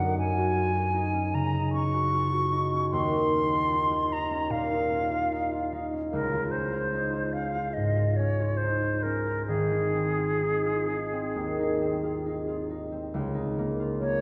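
A lush concert-hall reverb with a long 2.4-second decay surrounds this luminous, dreamy impressionist duo in Ab major, which moves in a free rubato 4/4 between 64 and 79 BPM. Up front, a pure, metallic silver concert flute carries the melody with soft attacks and vibrato, while a warm, thumb-plucked concert harp supplies ringing accompaniment through floating harmonies of Gbsus2, Ebsus2, Dbmaj7 and Ab6. At 13.1 s, the harmony settles onto Db69 as a new passage begins, just before this short fragment of a longer piece breaks off.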